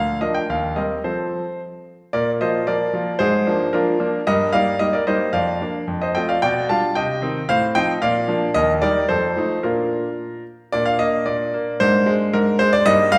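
In a straight 2/4 pulse, this playful, graceful classical-period sonatina excerpt features a solo concert grand piano, bright and up front, ranging from a deep bass to a brilliant upper register. The piano rings through the generous reverb of a recital hall, with the natural sound of a church or concert hall space. Its harmony moves through gentle inversions and seventh chords, and the passage closes at 13.2 seconds.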